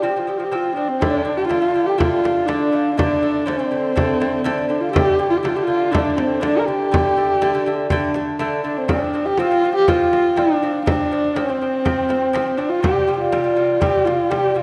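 A dark, husky horsehead fiddle carries the melody up front, its bowed horsehair strings giving a boxy, expressive tone shaped by vibrato, portamento and a soft attack. This short cut from a longer piece of traditional Mongolian folk moves at 122 BPM in a straight 4/4, with a galloping, vast mood. A fingerpicked lute plays delicate arpeggios from the start, its nylon double strings, some doubled at the octave, sounding warm and acoustic up front. The airy bamboo tone of an end-blown low xiao enters at 0.8 seconds with a tongued second line and its own vibrato, and a dry frame drum joins at 1.0 seconds as the piece moves into its second section. The harmony moves from F5 to D5, back to F5 and then to C5, and a moderate scoring-stage reverb gives the ensemble a sense of space.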